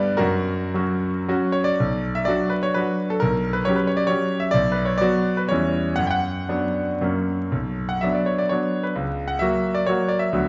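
A bright, brilliant concert grand piano with a deep bass plays alone throughout this wistful, capricious romantic dance in 3/4 and B minor, its dotted rhythms pulled by rubato between 105 and 144 BPM, moving from F# toward B minor by 1.8 seconds and on to a closing F#/C# at 9.0 seconds, all set in a wet scoring-stage reverb heard from further back in the room with vinyl crackle, cut from a longer piece.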